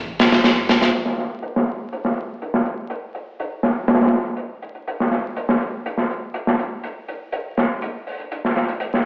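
A straight 4/4 breakbeat groove at 122 BPM drives this energetic, swaggering fragment cut from a longer piece. A dark detuned saw bass opens the clip, a deep, rumbling sawtooth-and-sine unison tone with audible beating, fast attack and sustained notes between F1 and A1, pushed through tube saturation and sitting in the background before it stops at 0.9 s. The crunchy breakbeat drum kit enters at 0.2 s and carries on until 9.0 s: an acoustic studio-room kit of hi-hat and medium-tuned snare, up front and mid-forward, with a gritty, saturated character and a rolled-off top. Low-pass filters on the kick, hats, snare and room take the brightness off the kit. The whole mix is bathed in a wet studio reverb and a stone room reverb, as if played on a big sound system in a bare room, with vinyl crackle and an AM radio coloring that give it a lo-fi, time-worn feel.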